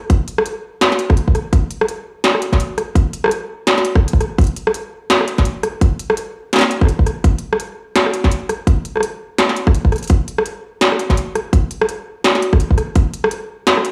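A small-room digital ambience frames this heavy, cinematic drum and bass excerpt at 168 BPM in 4/4, with a swung half-time feel carried by an up-front, hard-clipped electronic kick drum that stops at 13.0 seconds and an industrial drum kit of clanging snare, rim click and smooth hi-hat that runs on to 13.9 seconds.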